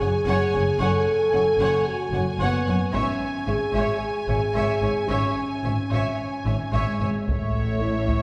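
A dark, relentless stretch of epic orchestral film score opens at once with the full string body and a French horn section, moving at 112 BPM in a straight 4/4 in C# minor. Two violin sections carry the upper lines, one lush and vibrato-rich with the melody, the other more focused on a second line just beneath it, while the violas hold an even, smooth accompaniment. The mellow horn section sits forward in the blend, sustaining chords with light vibrato, and bowed cellos and a focused double bass section anchor the low end. The harmony moves from F#madd9 to C#m/G#, arriving on A at 7.3 seconds, where a taiko ensemble strikes in with heavy sticks for the final moments. A wet scoring-stage reverb places the orchestra at a distance, giving the passage a sense of depth as this cut from a longer piece comes to its end.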